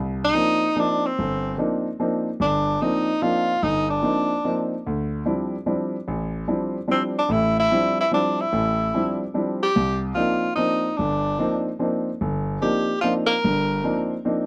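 A worn concert grand piano opens this spiritual, cool jazz waltz in C dorian at 147 BPM, comping in a swung 3/4 with deep bass and short sustain over Cm11, moving to Dm11 and back. A tenor saxophone enters almost at once, playing a roomy solo melody with light vibrato and scooped notes, pausing at 4.7 seconds and returning at 6.9. The dry, close sound of a small 1970s-style studio surrounds this cut from a longer piece.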